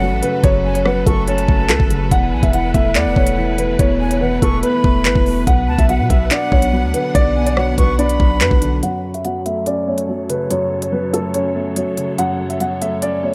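A knocking, up-front drill kit of electronic, produced character drives this cold, tense half-time hip hop fragment, its crisp hats, handclaps and rim clicks sitting in a small room. Beneath it, a punchy 808-style bass with a sine body, a noise layer and a fast, decaying attack carries the low end. A boxy baby grand piano with short sustain and audible action noise plays the melody through a low-pass filter and tape echo, while an airy, reedy concert flute with a straight, tongued tone traces a second line above it, also through tape echo. A thick-felted upright piano gives soft, muted accompaniment close to the listener, and a lush bowed string section adds sustained chords with vibrato and a smooth top, both softened by a low-pass filter. At 8.8 seconds the flute and bass drop out and a filter sweep carries the remaining parts through to the cut at 13.3 seconds, over a progression that moves from F#m through Esus4 and Bm before returning to F#m.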